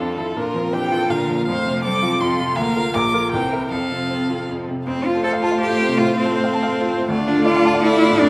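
A bright, brilliant baby grand piano sits up front with short-sustained accompaniment in this lively, cheerful excerpt from a quick classical-period movement for piano quintet, moving at 162 BPM in 3/4 in F major. Above it, one violin carries the melody with a dark, smooth, even tone and vibrato, while a clear cello plays a second line with light vibrato, and a second violin in the background adds an expressive line with portamento. A close, soft-attacked viola with warm vibrato fills out the accompaniment, all five players heard throughout the 8.3 seconds in a wet recital hall reverb, with a fresh section beginning at 4.9 seconds.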